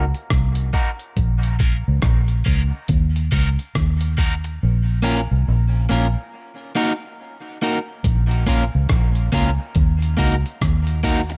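Set in a digital ambience, this meditative, heavy dub reggae excerpt in Bb minor moves slowly at 70 BPM with a swung 16th-note feel over alternating Ebm and Bbm chords. Up front sit a dark, round, foam-muted vintage electric bass and a gritty, compressed sampler-style breakbeat kit, its thumpy kick, hi-hat and rim click pitched up with a tape-warm character. A picked, slightly broken-up electric guitar carries dub echo and filtering, sweeping through a filter until 4.6 seconds, then falling silent until 8.0 seconds, with a break arriving at 6.3 seconds.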